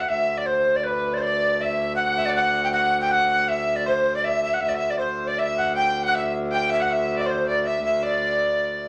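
A festive, rustic medieval dance in D mixolydian, moving at 159 BPM in a straight 3/4, heard as a brief cut from a longer piece. A bright, reedy tenor recorder carries the melody up front with a crisp, chiffy attack. A gut-strung bowed fiddle and a very quiet, ringing fingerpicked harp add second lines in the same register, while a clear, biting viola da gamba holds a low D drone with light vibrato, all set in a wet small room.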